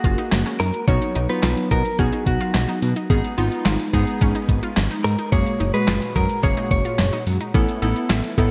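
Synth-pop in a bright, upbeat mood, this short excerpt moves at 108 BPM in a straight 4/4, cut from a longer piece and built on chords that run from F#add9 through B and G#m before turning to Asus2 near the end. A clean, direct-recorded electric guitar carries the melody with a picked, compressed tone, touched by subtle chorus and delay, and it drops out at 7.2 seconds while the rest of the arrangement continues to 8.5 seconds. Round analog keys with a detuned, wave-folded character and filter sweeps supply the accompaniment, while a dark, organ-like ensemble string pad holds sustained chords in the background under an ensemble chorus. A plucky analog arpeggio with a noise layer and short decay sparkles quietly behind them, treated with chorus and delay. Underneath, a fat, detuned sawtooth bass with filter sweeps anchors the low end, and a detuned 8-bit drum machine sits up front with a thumpy kick, medium-tuned snare, hi-hat and handclaps treated with gated reverb. 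A moderate plate reverb and bright 1980s-style digital production tie the whole sound together.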